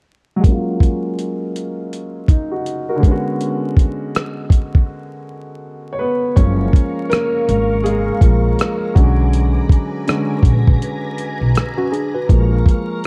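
A laid-back 4/4 groove at 81 BPM swings its sixteenths in this nostalgic, mellow lo-fi hip hop fragment in F# major, cut from a longer piece. A dusty, sampler-style drum kit sits up front with gritty, compressed hi-hat, a thumpy kick and rim clicks, while an intimate upright piano with audible action noise carries the chords from 0.4 seconds, moving between F#maj7 and Bm6 under a filter sweep and cassette-tape coloring, with a break from 4.9 to 6.4 seconds. At 6.4 seconds the piano takes a solo over rootless voicings, joined by a woody, pizzicato upright bass with steel-string brightness and a soft-attack, organ-like string ensemble holding sustained chords with a chorus shimmer. A worn, slightly out-of-tune tine electric piano adds a brief second line through tape echo near 11.8 seconds, as the harmony turns to A#m7. Light reverb, vinyl crackle and a dark production wrap the whole in a vintage haze.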